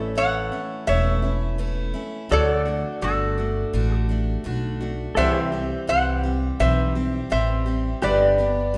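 A nasal, metallic lap resonator guitar played with slide and fingerpicks carries the melody up front in this sunny, heartfelt country excerpt at 84 BPM, backed by a thumpy, woody pizzicato upright bass, a full-bodied picked dreadnought steel-string acoustic guitar, a clean, compressed pedal steel guitar holding sustained chords with volume swells in the background, and a very quiet, dark, boxy concert grand piano, all moving through A, D, C and G in a moderate recital hall reverb.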